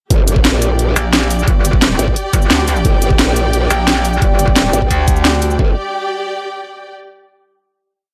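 A growling, saturated bass, overdriven kick and tight drum-and-bass kit with cracking snare, bright hats and shaker launch straight into a tense, mechanical drop at 175 BPM in G minor, joined from the outset by lush bowed strings with vibrato pumping under the sidechain. At 1.0 seconds a metallic FM wobble bass adds its bright, modulated phrases up front, and at 2.8 seconds a dark, detuned analog pad with lush chorus settles into the background. The drums and basses drop away around 5.6 seconds, leaving the strings to sustain a final chord in light reverb.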